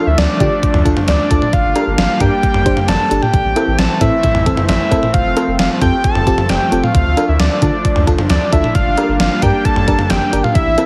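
Heavily compressed and radio-ready, with light digital ambience, this upbeat, bright synth-pop excerpt moves at 133 BPM in a straight 4/4 over a Dm, Gm, Am, F progression. Up front, a fat, full-bodied analog lead carries the melody with vibrato, while a glassy, bell-like FM electric piano with chorus and a shimmering, retro pulse-width pad fill in the chords beneath it. A round, deep analog bass with a filter pluck anchors the low end, and an overdriven 80s digital drum machine drives everything with a thumpy kick, gated-reverb snare, hi-hat, toms and cowbell.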